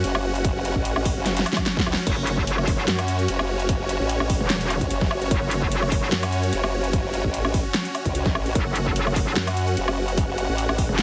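Chaotic and menacing, this heavy wobble dubstep excerpt rides a swung half-time feel, with huge, lush, detuned supersaw chords sustaining under sidechain pumping while a formant-filtered wobble bass with chorus and overdrive churns beneath from the start. An up-front dubstep kit brings a massive snare, metallic hats, crash and woodblock, including a fill at 1.3 seconds, and a punchy, tape-warm electronic kick joins at 0.4 seconds. A bright, aggressive FM wobble bass, saturated and chorused, cuts in at 2.1 seconds and returns later, and the whole mix sits in light reverb with a heavily compressed, radio-like sound.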